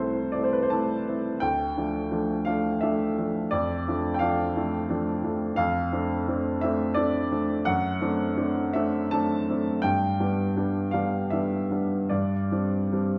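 The recording places the instrument in a recital hall with a generous, wet reverb, and the production leans dark and warm. It is a romantic classical character piece for solo upright piano, lyrical and hopeful, in 3/4 with a rubato feel somewhere between 73 and 89 BPM. The piano sounds woody and natural, sitting up front with a long sustain that rings into the room as the playing spans C2 to A5. The harmony moves from Am/C through Dm and Dm7/F to D7/F# at 7.7 seconds, arrives on G at 9.8 seconds, and turns to Gsus4 at 12.1 seconds. The passage is cut from a longer piece, so it ends on that suspended chord.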